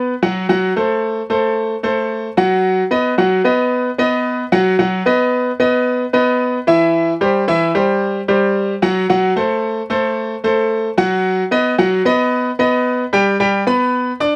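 A bright grand piano carries this short Latin passage alone, playing from start to finish across its 14.4 seconds and ranging from E3 up to D6. Set at 112 BPM in a straight 4/4, the music feels danceable and warm, and it is drawn from a longer piece. The piano sits up front with a brilliant, natural tone, captured by close, detailed microphones and a light touch of reverb. Its harmony moves through F#dim, B and C, returns to F#dim and B, and reaches G at 13.4 seconds. The instrument is tuned slightly high, with A4 at 444 Hz.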